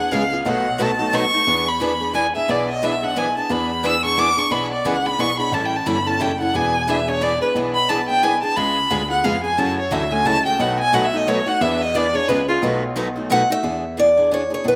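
A rich, focused bowed violin with vibrato takes the solo from the opening until 13.6 s in this swinging, charming acoustic jazz manouche excerpt at 178 BPM in 3/4 and E mixolydian, backed by two boxy picked steel-string acoustic guitars with fresh strings and by a dark, mellow baby grand piano playing the bass, before a bright picked acoustic guitar melody enters at 13.3 s, heard through a lush hall reverb in a rough home demo mix.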